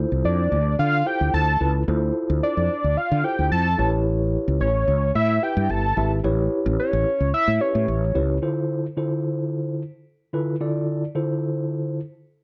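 A mellow tine electric piano and a round, punchy fretless bass open this funky, late-night boogie-funk groove at 110 BPM in D dorian, moving from Dm9 to A7 and back. A fat, detuned sawtooth lead with a sub octave, chorus, vibrato and slapback echo carries the melody until 8.2 s, and the bass stops at 8.4 s, leaving the piano alone. A moderate large-studio reverb lends space to the up-front parts.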